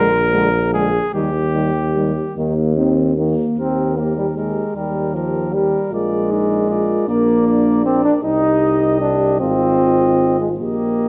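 Stately and warm in mood, this classical brass quintet passage moves in an unhurried 6/8 lilt, heard as a short cut from a longer piece. The trumpet carries the melody in a classical style, while a dark, close-miked flugelhorn traces a very quiet second line beneath it. A mellow French horn sits in the background as accompaniment, and a clear trombone, placed up front yet with a roomy, distant quality, fills out the middle of the harmony. Underneath, the tuba anchors the bass with a gentle vibrato, also up front but carrying a sense of space around it. All five instruments play together from 0.0 to 11.1 seconds, moving through Bb7, Eb, Cm and Fm7/Ab in a moderate recital hall reverb captured by close, detailed microphones.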